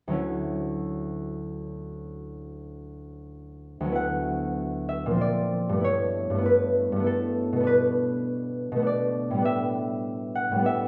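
A solo concert harp, thumb-plucked and ringing up front from D2 to F#5, opens this serene, graceful excerpt from a longer classical piece in D major and 3/4, moving with rubato between 84 and 102 BPM through chords from Dmaj9 to a Bbadd9 at 5.2 seconds and on to A11, all bathed in a wet recital hall reverb.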